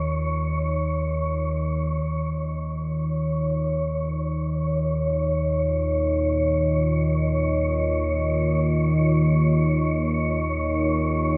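A warbling, vintage analog drone sits up front, sustaining low on an Ebsus2 chord through this unsettling, ominous dark ambient fragment in free time, alongside an airy, breathy wind-like tuned noise texture held high on Db5 and a deep, moody analog pad with chorus and phaser murmuring in the background, all bathed in a cavernous cathedral reverb as the music moves into a new section at 2.0 s.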